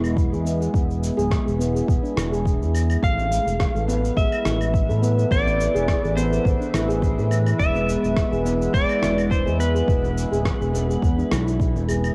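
Heard through a homemade cassette recording with moderate spring reverb, this meditative organic downtempo piece at 105 BPM, cut from a longer work and tuned to A4 = 436 Hz, moves from E to Amadd9 and back, with a mellow detuned analog pad pumping under chorus and shimmer reverb, ringing stainless-steel handpan arpeggios trailing analog delay, a dark, up-front gliding synth bass, and a deep, tape-warm electronic kick. Gritty, overdriven claves, shaker and rim click sit low in the mix, a clean, dark lap steel guitar played with fingerpicks and slide carries the melody in volume swells from 3.0 seconds, and a very quiet, distant djembe with metal rattles joins at 3.2 seconds.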